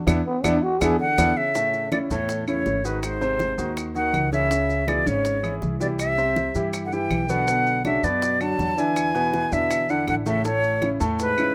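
Afro-Cuban jazz at 162 BPM in A major, this lively, sunny excerpt is cut from a longer piece and has the light reverb and rough feel of a home demo. A growling, raspy trombone takes a short solo over a band accent and a drum fill before the music settles into its main section at 1.6 seconds. A breathy, bright concert flute carries the melody up front from 1.0 seconds, its straight, tongued tone slightly unsteady, while the trombone continues as a mellow second line with vibrato and a soft attack. A clear baby grand piano with short sustain sits prominently in the accompaniment, and a dark, thumpy pizzicato upright bass anchors the low end. The percussion mixes round, low-tuned bongos and thick-skinned congas in the background with woody, saturated claves and grainy maracas, over chords that move from Amaj7 through G#7, C#m, C, Bm7 and E7 before returning to Amaj7.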